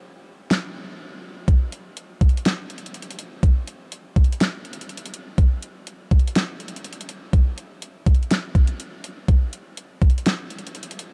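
A smooth R&B drum kit comes in at 0.5 s with a knocking kick, fat snare and metallic hi-hats, its electronic, tape-warm sound sitting up front in a dark, dry mix. The hip hop groove moves at 123 BPM in 4/4 with a half-time feel, giving this short cut a hazy, spacious mood. The passage shifts into a new section at 1.5 s, and the drums carry on until 11.1 s.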